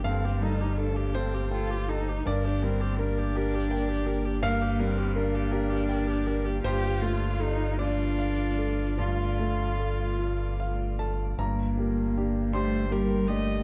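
A dark, lightly reverberant neoclassical fragment for piano and strings in G minor, fragile and reflective, unfolds in rubato 6/8 at 50-56 BPM: an intimate grand piano sits up front with its action noise audible, a deep, clean sine sub bass anchors the low end, a woody sul tasto cello carries the second line with vibrato and portamento, a floating viola adds soft-attack accompaniment, and a glassy, warbling FM pad with chorus hovers in the background as the harmony moves from Fadd9/G through Gm and Dm/G before settling back on Gm at 11.4 seconds.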